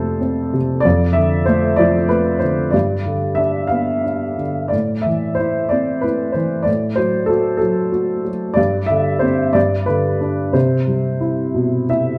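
Tender and calm, this lyrical classical solo piano piece unfolds at 62 beats per minute in 6/8, its uneven beats and rubato giving the phrasing a breathing, unhurried quality. A single upright piano carries everything, sitting up front with a dark, mellow, woody tone, an intimate closeness that lets the action noise come through, and a slightly detuned character. Its range spans F2 to F5, and the harmony drifts from F through Dm/F and G7 to A minor and Am6, then passes through Gsus4 and G before settling on Cmaj7. A brief piano fill arrives at 11.6 seconds, just before this fragment of a longer piece ends at 12.2 seconds. The recital hall reverb is moderate, and the production is warm and shadowed overall.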